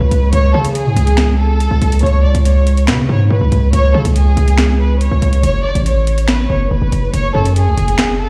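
A lush, bowed violin section with vibrato, dulled by a low-pass filter and trailed by delay, opens this cold, dark half-time drill fragment over an aggressive, distorted 808-style bass sitting heavy and up front, while an electronic kit of finger snaps, metallic hi-hats and a sharp snare enters at 0.1 seconds, all heard as if played on a big sound system in a bare room with large studio reverb.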